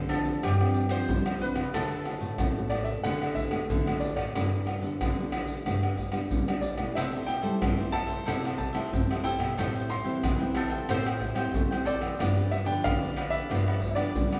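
Samba and choro come together in this lively, sunny excerpt, moving at 92 BPM in a straight 4/4 over a progression that runs from G7sus4 through D6, G, C6 and Am7 to G7. An intimate grand piano carries the melody, its action noise audible, while a full-bodied nylon-string guitar fingerpicks the accompaniment with a touch of finger squeak. A second nylon-string guitar, dark and woody with old strings, supplies a thumb-plucked bass line. A plectrum-plucked sitar adds a buzzing, shimmering second line rich with sympathetic strings, appearing at 0.1 s and again at 10.6 s, and a crisp, bright cavaquinho joins the accompaniment at 7.0 s. Up front, the pandeiro, tamborim, tube shaker and a deep surdo drive the groove, and the whole piece sits in a recital hall whose reverb lingers for 1.7 seconds.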